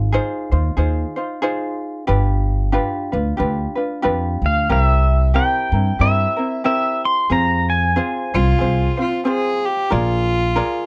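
Relaxed and dreamy, this short Hawaiian excerpt moves at an easy 92 BPM in 4/4 with a gentle swing on the eighth notes, cut from a longer piece. A mellow, fingerpicked acoustic ukulele and a woody, pizzicato upright bass with steel strings open together, the bass sitting low and dark beneath the ukulele's light chords. At 4.5 seconds an electric pedal steel guitar takes the melody high above, its clean, twangy slide tone played with fingerpicks, compressed and shaped by volume swells. Near the close, at 8.3 seconds, a single bowed cello adds a second line with a nasal, reedy, gut-string character in a period style. The harmony drifts from Ab6 through G7 and C7 to Fm before landing on Bb7, and the whole is captured as a dry, close 1970s-style studio recording with every part up front and little reverb.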